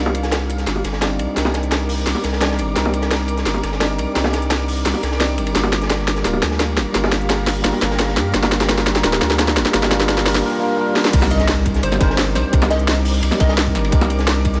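Liquid drum and bass at 172 BPM in C minor, rolling and dreamy, this cut-off passage builds for 11.1 seconds as a worn, slightly out-of-tune, lightly overdriven tine electric piano is filter-swept over a shimmering, ethereal ambient pad pumping in the background, a deep, thick saturated sub bass, soft-handed low-tuned bongos, a gritty rolled-off breakbeat kit tucked behind a crisp, up-front drum and bass kit with a cracking snare, and a drum fill moving through Cm9 and Gm7, before the drop at 11.1 seconds lands a tight electronic kick, a very quiet impact and a brief punchy, catchy plucky unison lead with analog chorus and tape echo, all in light small-room ambience.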